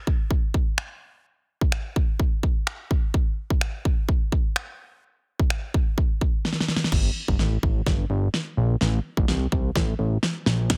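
A bittersweet, energetic dance-pop excerpt in G minor at 127 BPM in a straight 4/4 opens with an electronic pop drum kit at 0.1 s, sitting up front with a punchy kick, a fat snare edged by soft clipping, metallic hi-hats, finger snaps and crash cymbal. The layered, produced kit carries the first section alone, and a drum fill arrives at 6.4 s. At 6.9 s a thick analog bass joins, a detuned, saturated sawtooth tone with a fast attack and sustained notes, moving between G1 and C2 and pumping under sidechain compression. This second section is a build-up, with the drums filling through to the end of the clip. The sound is dry, with a dense, heavily limited modern master.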